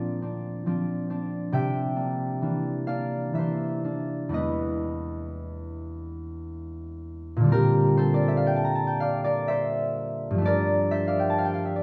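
A recital hall's lush reverb, lingering about 1.3 seconds, surrounds this brief excerpt of a dreamy, serene classical piece for solo concert harp, set in Bb lydian and moving in a rubato 3/4 at roughly 56-70 BPM. The thumb-plucked harp sits up front with an acoustic, ringing tone, spanning E2 to D6 as it drifts through Bbadd9, C9 and Emaj7 harmonies. At 7.5 seconds it settles onto a Bb69 chord for a new passage that carries through to the close at 11.8 seconds.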